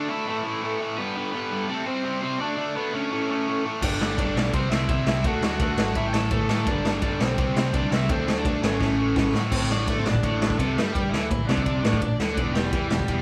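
Punk rock with an energetic, rebellious drive, cut from a longer piece, opens with a bright, double-tracked distorted guitar riff under a crunchy overdriven lead melody. At 3.8 seconds a growly, punchy picked bass comes in alongside a gritty garage drum kit, up front, with a boomy kick, crash, ride and a medium-tuned snare. A drum fill at 8.8 seconds leads into a new section as the band plays live together in one room with light reverb.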